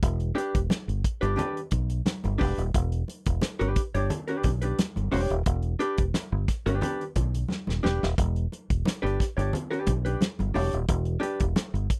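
A dry, close 1970s-style studio sound frames this driving funk excerpt at 88 BPM in E dorian, where a fat-snared, tight-kicked soul drum kit with a rolled-off top and a round, punchy fingered electric bass sit up front over a single Em7, joined at 0.3 seconds by a dark, clean, compressed hollow-body jazz guitar and at 0.7 seconds by softly played, ringing congas, with a drum fill at 7.5 seconds.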